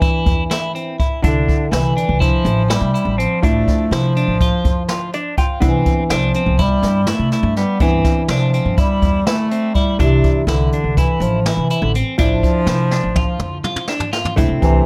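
Driving and intricate, this progressive instrumental excerpt moves at 246 BPM in 9/8, with an up-front, breathy bass clarinet carrying the melody with light vibrato and a touch of delay over Cmaj7 and Dmadd9 chords. A dark, clean hollow-body jazz guitar comps in the background and adds a fill at 4.9 seconds, while a twangy, slightly broken-up electric guitar plays phaser-tinged arpeggios and a woody, thumpy pizzicato upright bass anchors the low end. A punchy brush drum kit sits up front and closes with a fill from 12.9 seconds, just before a distant, roomy trombone slips in at 14.6 seconds, all in a light reverb.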